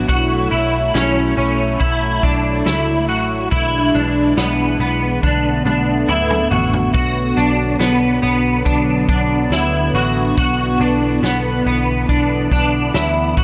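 A twangy, slightly broken-up electric guitar sits up front, playing fingered arpeggios through ensemble chorus and delay in this ethereal, hazy dream pop piece, cut from a longer work. Beneath it a swirling, detuned analog pad holds sustained chords with phaser and chorus, while a round, foam-muted picked bass and a vintage drum kit with a punchy kick and rolled-off top carry the straight feel. The drums play a fill from 5.2 to 6.9 seconds before the opening passage repeats, all within a light, small-room ambience.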